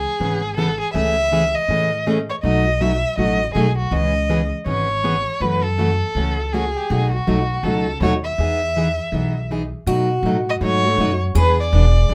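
Charming and lively, this short cut from a longer jazz manouche piece swings at 161 BPM, with an expressive, up-front bowed violin singing the melody with vibrato and portamento over a thumpy, woody pizzicato upright bass and a bright picked plugged-in acoustic guitar accompaniment, while a second picked acoustic guitar adds a short line from 9.9 seconds, all set in a moderate club reverb.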